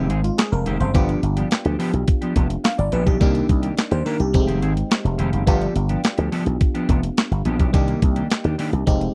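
An up-front slap bass run through an envelope filter anchors this slick, funky early-eighties boogie funk excerpt, its tone bright, growly and punchy as it holds the low end at 106 BPM in a straight 4/4. A crisp 8-bit digital drum machine enters at 0.1 seconds with a thumpy kick, a medium-tuned snare, hi-hat and handclaps, sitting forward in the mix with a sampler-style, electronic character. An FM electric piano supplies the accompaniment with a glassy, bell-like attack and a noise layer, treated with chorus and phaser. A mellow electric guitar plays a dark, clean, fingered riff coloured by analog chorus, sitting at the same level as the keys. The harmony cycles through Fm9, G7 and Cm9, and the dry, close sound of a 1970s-style studio keeps every part tight and present across the 9.1 seconds of this cut from a longer piece.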